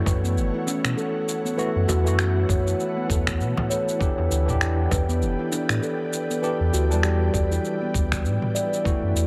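Organic downtempo with a mystical, warm mood, this short cut from a longer piece moves at 99 BPM in 4/4 with a gentle 16th-note swing, sitting in E dorian as the harmony shifts from F#m7 to Em7 at 4.0 seconds. A worn, slightly out-of-tune tine electric piano carries the accompaniment, lightly overdriven and pumping with the sidechain, with analog delay trailing its notes, while an ethereal, airy pad of detuned, chorused voices holds mellow sustained chords above it. A round sine sub bass sits deep and up front, also breathing with the sidechain, and a steel tongue drum struck with rubber mallets rings out pure, meditative arpeggios through its own delay. The rhythm comes from a gritty, thumpy sampled kick and a produced electronic kit of cabasa, finger snaps and toms, joined until 5.1 seconds by a deep, dry frame drum played with hard hands at a very low level. From 4.0 seconds a quartz singing bowl adds a barely audible, bright ring with slow beating, and the whole mix floats in a moderate spring reverb that leaves it echo-heavy.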